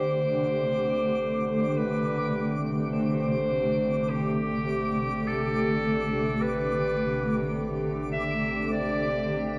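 This slow, melancholic and serene ambient excerpt in A minor at 52 BPM opens on an Am11 chord, with a bright, vintage-toned solo clarinet carrying the melody up front through tape echo over a cloudy, blurred granular pad. Beneath them, a very quiet felt-muted upright piano plays soft, boxy arpeggios, a sparkling granular texture twinkles high above, and a deep, ominous drone rumbles in the background, fading in across the full 9.6 seconds. A lush scoring-stage reverb and the warble of worn cassette tape, with its drifting pitch, give the whole recording a hazy, aged character.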